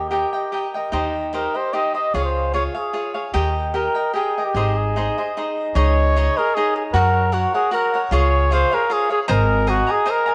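Mexican folk mariachi in a proud, festive 3/4 at 150 BPM, where a mellow trumpet sings the melody in a classical style with light vibrato over crisp, picked cavaquinho and woody, dark pizzicato upright bass, all up front in a moderate echo-chamber reverb, as this short section of a longer piece moves from Ab major to Db major at 5.8 s and the bass drops out at 9.8 s.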